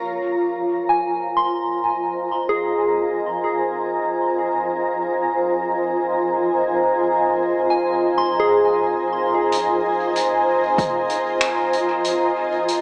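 Heard through a small speaker and soaked in a wet echo-chamber reverb with studio ambience, this hazy, spacious ambient dub excerpt in F minor sits at 95 BPM in a straight 4/4 over an Fm7 chord. A bright, up-front granular cloud pad holds blurred, detuned sustained chords from the start, and from 0.9 seconds a pure, gentle FM bell spins arpeggios through chorus, phaser, a low-pass filter and tape echo. At 9.5 seconds a distant, roomy soft-mallet kit brings in finger snaps and hi-hat under dub echo, and a punchy, overdriven electronic kick lands once at 10.8 seconds.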